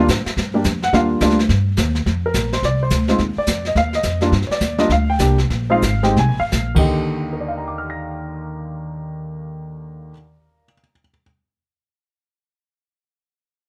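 An intimate baby grand piano with audible action noise carries the melody over a woody, thumpy pizzicato upright bass on gut strings from the start of this playful, swinging jazz piano trio excerpt in Eb major, with a softer brushed drum kit of dark cymbals and a boomy kick joining at 0.1 seconds, the 4/4 pulse ranging from 148 to 213 BPM and slowing between 4.3 and 6.9 seconds as the drums fall away at 6.8, all caught by close, detailed microphones in light reverb.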